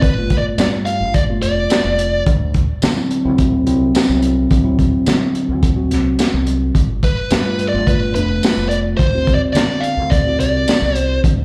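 Heard through a venue's PA with a club reverb hanging over it, this short live cut of a longer piece has a gritty, swaggering soul-blues feel in straight eighths at 107 BPM in 4/4, set in D mixolydian. A crunchy breakbeat kit sits up front with a punchy kick, a medium-tuned snare, hi-hat and tambourine, its small-room sound dark and saturated with a rolled-off top. Underneath, a deep dub bass played with the fingers stays round and punchy, while a mellow tine electric piano comps cleanly through its built-in speakers with a touch of slapback echo. The biting lead guitar is bright and overdriven, picked up front with slapback and tape echo. It plays a brief phrase at the start, drops out, and returns at 7.0 seconds to carry the melody over harmony that moves between G9 and D9.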